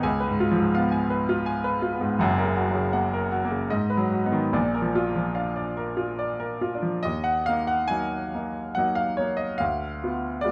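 A clear, up-front grand piano carries this mournful, wistful romantic nocturne alone in a rubato triple metre, reaching from deep bass to upper register under light reverb and a dark production, its brief passage cut from a longer piece turning to a new section at 7.1 seconds.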